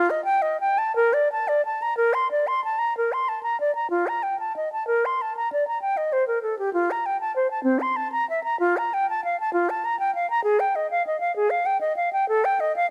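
Rubato 6/8 unfolds at roughly 56-68 BPM counted in dotted quarters, giving this baroque-style fantasia for unaccompanied flute a flowing, serene lilt. The concert flute plays alone throughout, from 0.0 to 12.9 s, ranging from C4 to C6 with a pure, straight tone and tongued articulation. It sits up front in the sound, caught by close, detailed microphones and set in a light reverb. A brief opening passage gives way at 3.0 s to a new section that carries the line through to the end of this excerpt, which is cut from a longer piece.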